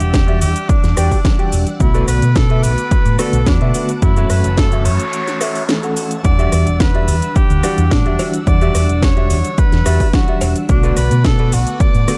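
A steady, straight 4/4 groove at 108 BPM drives this sleek, sensual nu-disco passage in E dorian, cut from a longer piece, with a punchy, overdriven electronic kick sitting up front beside a house drum kit of cracking snare, metallic hats, rim click and shaker. A fingered electric bass, dark and round, anchors the low end, while a reedy electric piano with fast tremolo, sidechain pumping and tape echo carries the accompaniment through chords moving from Em9 to Bm7, F#m7 and back. A lush string machine ensemble holds sustained, slow-attack chords in the background with ensemble chorus and pumping, and a mellow, clean electric guitar plays a riff from 0.3 seconds, colored by analog chorus and tape echo. Over it all, a breathy, whispered tenor saxophone sings an intimate solo melody with light vibrato and analog delay. A noise sweep leads into a short break ending at 6.2 seconds, and a close, dry cowbell with tape echo appears at 8.2 seconds in a mix that is echo-heavy but carries little reverb.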